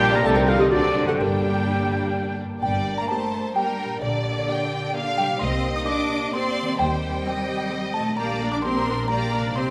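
A tinkling, delicate music box carries the melody with a lush, distant violin section in this sneaky, mischievous G minor film cue excerpt at 130 BPM in 3/4, where a roomy oboe and a very quiet clarinet add a brief second line until 2.4 s, a second violin section sings a portamento-laced counterline, a focused viola section and mellow French horn section sit in the background, a ringing harp plays arpeggios, and smooth cellos with bowed double basses anchor the bass, all set in a wet scoring-stage reverb.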